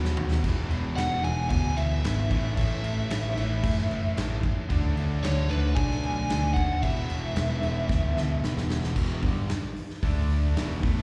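A growly overdriven electric bass sits up front in this energetic, anthemic hard rock passage in E mixolydian, driving a straight 4/4 groove at 113 BPM through a progression of E, A, D and back to E before shifting to E5 and D5 power chords once the second section arrives at 9.0 seconds. Beside it, a huge arena drum kit sounds acoustic and natural in a big room, with bright cymbals, a medium-tuned snare and a punchy kick, though a vintage 12-bit sampler grit colours its tone, and fills break out at the very start and again leading into that later section. Three rhythm guitars play picked, overdriven riffs from the low end upward: a cranked stack guitar and a distorted electric guitar with slapback echo both sit in the background, while a crunchy, double-tracked guitar lies very quiet underneath. From 1.0 to 8.4 seconds a biting, warm-toned lead guitar carries the melody high above the riffs, dressed in plate reverb, slapback echo and analog delay. 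The whole performance comes across like a live gig heard through the venue's PA, set in a light recital-hall reverb, and this short cut is lifted from a longer piece.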